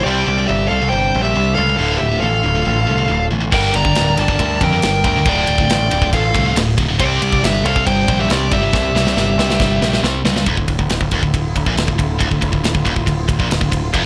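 Aggressive and heavy, this heavy metal passage, cut from a longer piece, drives at 138 BPM in D minor. A dark, smooth overdriven lead guitar carries the melody over a second distorted high-gain lead line, with a growling, overdriven picked bass up front and a bright high-gain riff guitar underneath, while lush bowed strings with vibrato hold sustained chords in the background. At 3.5 seconds a scooped high-gain guitar adds a second riff and a tight drum kit with bright cymbals joins, and a drum fill at 8.7 seconds leads into a new section at 10.5 seconds after the leads fall away, all in a small room ambience.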